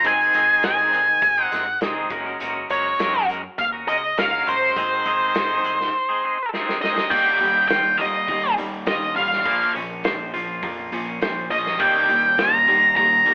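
Quiet-loud alternative rock at 102 BPM with a dark, angsty mood, this cut from a longer piece opens on an up-front octave-fuzz lead guitar melody over twangy, clean electric guitar arpeggios with tremolo, a round, amped bass in the background and a loose indie drum kit with a punchy kick in a small, pumping room, then after a drum fill a bright high-gain distorted guitar riff enters at 7.1 seconds and a compressed fuzz guitar riff joins in the background at 11.8 seconds, all heard through a lo-fi telephone-like sound with light reverb, as if the band were playing live in one room.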